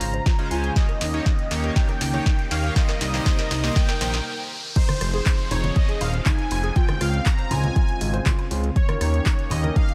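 Progressive house at 120 BPM in F minor, emotional and driving, cut from a longer piece: a build-up with a drum fill, filter sweeps on the smooth supersaw melody and the dark, round pluck arpeggios, glossy chorused polysynth stabs that stop at 4.1 s, a brief stop, then a drop at 4.8 s where soft-handed congas and woodblock join the deep, up-front kick, punchy-snared deep house kit, thick saturated analog bass, warbling vintage pad and background riser and downlifter, with pumping sidechain on the synths and tape echo on the supersaw, polysynth and pluck over Dbmaj7, Eb7, Cm7 and Fm7 chords in light reverb.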